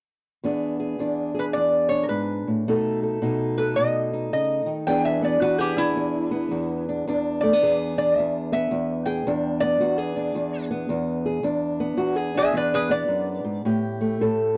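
A boxy, parlour-toned fingerpicked steel-string acoustic guitar opens this gritty, soulful, swung acoustic country blues fragment at 0.4 s, joined at 1.4 s by a metallic, nasal lap resonator guitar played with fingerpicks and a steel slide bar, carrying the melody before taking a solo from 4.9 s, with both guitars up front in a dry, close 1970s-style studio sound touched by light reverb.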